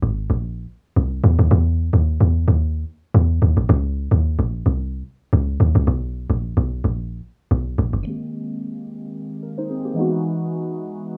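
A deep, round log drum bass with a dark, percussive FM tone opens this relaxed, soulful amapiano excerpt at 110 BPM with a gentle 16th-note swing, carrying the drop over Abadd9, Dbsus2 and B5 until 8.0 seconds, when glassy, airy digital keys with chorus and a low-pass filter sweep take over on Abmaj9 and Emaj9, all set in a dry, gritty small-room sound.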